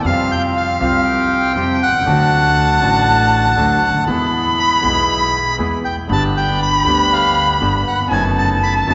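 Drenched in a cathedral-like reverb that lingers for 3.4 seconds, this short cut from a longer tango sounds as if captured in a church or concert hall, its top end rolled off into a soft, dusky haze. The mood is sultry and dramatic, moving at 119 BPM in 4/4 with a rubato feel across chords of Fsus2, D, E, G and B7/F#. Up front, a dark, reedy bandoneon carries the melody from 0.1 seconds, while a single bowed violin shares the same high register as a second line, its expressive vibrato, portamento and smooth top adding a singing glow. A concert grand piano supplies the accompaniment with deep bass and short, clipped sustain, and a pizzicato upright bass with steel strings gives a woody pulse underneath. A second bandoneon stays in the background with boxy stabs that seem to sit in a small room of their own.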